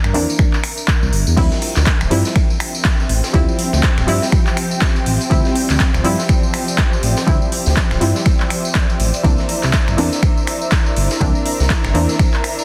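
Late-night and deep, this deep house excerpt moves at 122 BPM in D minor with a swung 16th-note feel, opening on C9 before settling on Dm11 from 1.4 seconds and returning to C9 at 9.2 seconds. A punchy, up-front electronic kick enters at 0.4 seconds beneath a smooth, dark sawtooth bass with sidechain pumping, while muted dub chord stabs carry chorus and digital delay, a cloudy granular pad drifts with built-in reverb, and a mellow, detuned analog pad joins at 1.4 seconds. The drums layer a small-room kit of smooth hats, finger snaps, handclaps and crash with a jingly, band-limited tambourine and a gritty, pitched-up sampler-style breakbeat kit with a high-tuned snare set far back in a large room, all inside a dense, heavily limited master dusted with vinyl crackle.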